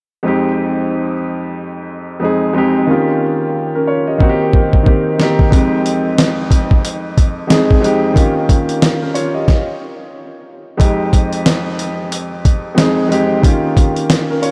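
A dusty, sampler-style drum kit anchors this dark, gritty boom-bap hip-hop excerpt. It arrives at 4.2 s with a fill, its thumpy kick, fat snare and hi-hat sounding compressed, overdriven and re-recorded in a small room. Before that, a vintage baby grand piano plays the accompaniment alone from 0.2 s, smooth and long-sustaining, carried through a cassette-tape character with high- and low-pass filtering. The piano moves through minor-seventh and dominant-seventh chords over a swung 16th-note feel, and a stop at 9.5 s briefly suspends the harmony before a new section begins. The whole dreamy mix is soaked in a huge ambient reverb, while the drums and piano both sit up front.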